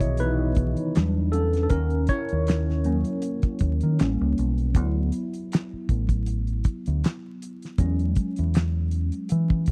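This R&B and neo-soul excerpt at 79 BPM, with a light 16th-note swing, has a smooth, introspective mood carried by a worn, slightly out-of-tune tine electric piano soloing through a phaser and a combo amp over chords such as C#m9, A7b9 and D69, backed by a round, dark, fingered dub bass and a damped 70s drum kit of handclaps, hi-hat, tight kick and fat snare with a rolled-off top, captured in a dry, close 1970s-style studio sound dusted with vinyl crackle.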